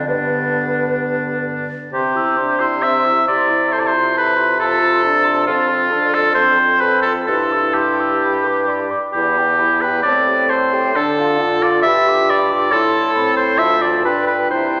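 In a rubato 4/4 at 133 BPM, this quick, cheerful and spirited classical-period wind quintet movement in C major, cut from a longer piece, puts a clear oboe with light vibrato up front on the second line while an airy, hollow concert flute carries the tongued, vibrato melody in the background, over a warm French horn, a distant, roomy clarinet and a soft-attacked bassoon with light vibrato on the bass, all bathed in a wet concert hall reverb as the harmony moves from G to C at 1.9 seconds and ends on G7.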